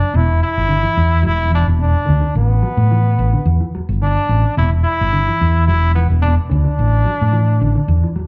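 A brilliant trombone opens this short afrobeat excerpt, carrying the melody between B3 and E4 with light vibrato and a punchy, vintage pop-style solo voice, its notes trailed by a slapback echo. Almost at once a hollow-body short-scale electric bass, fingered and amped, sits up front with a round, dark tone in the low register from E1 to A2, while a mellow, clean electric guitar plays fingered arpeggios in the background. The groove is driving and intense at 108 BPM in 4/4, with a slight swing on the sixteenths, and the harmony in E minor alternates between an E7 chord with its third omitted and Asus4 every couple of seconds. The sound is that of a live gig heard through a venue's PA, with small-room ambience and club reverb around the players. All three parts run through to roughly 8 seconds, as this fragment is cut from a longer piece.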